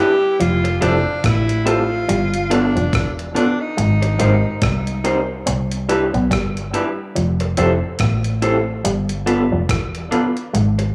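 A breathy, whispered tenor saxophone with tape echo opens this smooth, romantic lovers rock reggae excerpt at 71 BPM, over a gritty overdriven tine electric piano with fast tremolo and slightly broken-up electric guitar stabs bathed in spring reverb. At 0.4 seconds a round, punchy, foam-muted fingered bass enters up front alongside a crisp 8-bit drum machine with a thumpy kick, hi-hat and rim click, while a twangy envelope-filtered guitar riff with dub echo joins the swung 16th-note groove moving through Fmaj7, G7, Abmaj7 and Cmaj7. The intimate saxophone, with its vibrato and scooped notes, falls away at 5.0 seconds, leaving the keys, guitars, bass and drums in a small, lightly reverberant room.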